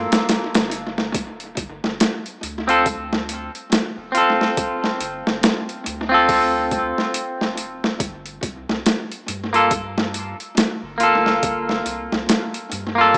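An echo-heavy mix with a small-speaker sound and a moderate echo-chamber reverb frames this dark, melancholic trip hop excerpt in G minor, moving at 70 BPM with a 16th-note swing over Gm7 and Dm7, returning to Gm7 at 8.0 seconds. Up front, a bright, twangy clean electric guitar plays picked accompaniment through harmonic tremolo and tape echo, beside a gritty, compressed, pitched-down boom bap sampler kit with a thumpy kick and a high-tuned snare, overdriven and echoed. Underneath sits a soft, round dub sub bass, deep and sustained in the background.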